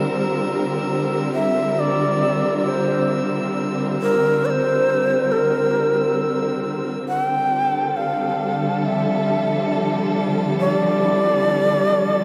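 A lush, bowed string section opens this luminous, weightless ambient piece at 68 BPM in F major, tuned to A4 = 438 Hz. It holds sustained chords up front with vibrato and portamento, while a very quiet felt-muted upright piano plays soft, mellow arpeggios with audible action noise and a short sustain. High above, a glassy, sine-like texture of drifting overtones sits on slow attacks and long releases, treated with chorus and its own reverb. At 1.3 seconds a close-miked, breathy shakuhachi enters with the melody, its crisp, chiffy bamboo attack carried by delay. The harmony moves from Bb69 to Fmaj7 at 7.1 seconds as the glass texture fades in further toward the close, and everything sits in a huge, wet ambient reverb with an 8-second decay. The recording is a portion cut from a longer piece.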